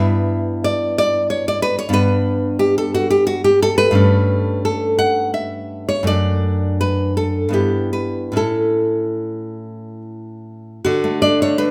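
A romantic piece for solo classical guitar in 3/4 with a rubato feel, its nostalgic, sunny mood carried by a single nylon-string guitar that plays throughout this short excerpt cut from a longer work. The fingerpicked guitar sits up front with a bright, full-bodied tone, ranging from F#2 to F#5 as the harmony moves from Em/G through G, A7/G and D/F# before coming to rest on a D5 at 10.9 seconds. A moderate recital hall reverb gives the instrument a natural sense of space around it.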